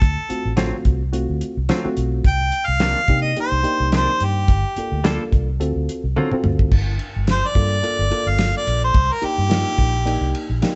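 A dusky, low-fi room sound with light reverb and a rolled-off top frames this brooding, smoky soul blues excerpt in G minor, moving at 108 BPM with a straight-eighth feel. An up-front harmonica with overdrive carries the melody over a reedy, slightly out-of-tune electric piano, a round, foam-muted electric bass and a damped 70s kit with a fat snare and dark cymbals, while a twangy, compressed clean guitar with vibrato adds stabs from 0.6 to 6.3 seconds. After a drum fill, the harmonica takes a solo from 6.7 seconds over minor-ninth chords.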